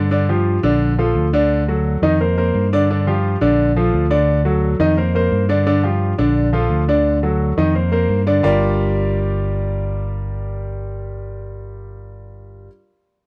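Latin groove in G minor at a brisk 173 BPM, passionate and danceable, where a clear, up-front grand piano carries the accompaniment over a dark, round, amped fingered electric bass, both playing throughout this short cut from a longer piece, cycling Gm7, Bbmaj7, D and Fsus4 before shifting to a new section at 8.4 seconds in a dry, close 1970s-style studio sound.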